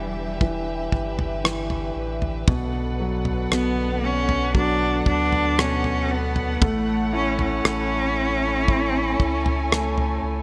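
An expressive, bowed solo cello carries the melody up front in this tender, heartfelt pop ballad excerpt at 58 BPM in A major, its vibrato and portamento trailed by a delay. A polished baby grand piano with long sustain, a distant, woody chamber string section holding sustained chords, and a deep, round sub bass move through Em7, Bm7 and A6, while a dry, damped 70s drum kit with a tight kick, rim click and toms sits up front from 0.4 seconds. Moderate plate reverb and a bright 1980s-style digital production frame the sound.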